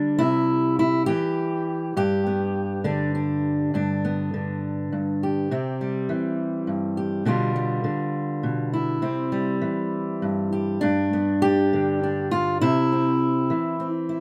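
A fingerpicked steel-string acoustic guitar plays alone throughout this short folk excerpt, its warm, up-front tone spanning G2 to G4 under a light reverb. The mood is peaceful and nostalgic, moving in a rubato 6/8 at around 68 BPM in G mixolydian. The harmony drifts gently between C and G, with a G7/B arriving at 7.3 seconds and resolving to C before G returns at 10.8 seconds and the excerpt closes on C.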